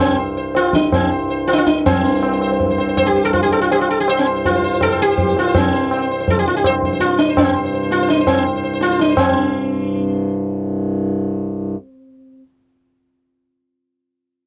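In a straight five-beat cycle that gathers speed through its first 11.0 seconds, this radiant, devotional Hindustani classical excerpt sets a buzzing, shimmering plectrum-plucked sitar melody up front, alive with sympathetic strings, over a reedy, nasal, breathing hand-pumped harmonium drone in a boxy small room, while a high-tuned, ringing tabla sounds distant in a large room from 0.5 to 9.3 seconds, all captured in a dry, close 1970s-style studio recording.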